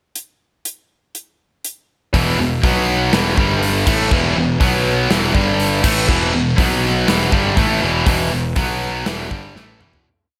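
Menacing and heavy, this short hard rock piece in E minor moves at 121 BPM in a straight 4/4. A gated 80s drum kit opens alone with a pickup bar from 0.2 seconds, its punchy kick, medium-tuned snare, toms, hi-hat and bright crash cymbals sitting up front in a polished, airy gated room sound with a half-time big groove. At 2.1 seconds two distorted electric guitars enter together on a picked power-chord riff, one tight and the other scooped and high-gain, both bright and up front as they cycle through E5, B5 and G5 before touching on Em. A fuzz-toned picked electric bass joins at the same moment, overdriven and direct, driving eighth notes as it doubles the guitar riff down low. A small room ambience surrounds the band, and the piece fades out from 8.1 seconds, with a closing drum fill rounding it off.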